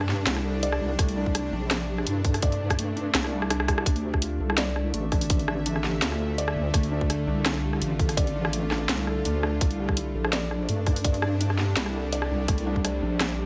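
A half-time drum and bass groove at 167 BPM, lightly swung, drives this tense, heavy excerpt, with a tight, up-front electronic kick entering at 1.0 seconds beneath a layered kit of hi-hat, rim click and cracking snare that plays a fill at 3.1 seconds. A deep, dark wobble bass with chorus anchors the low end, while a felt-muted upright piano plays soft, intimate arpeggios through a dub echo. Alongside them, a bright, string-like bowed drone holds sustained chords with vibrato, built-in reverb and sidechain pumping, as the harmony moves from Cadd9 to Dm and back to Cadd9 at 9.6 seconds.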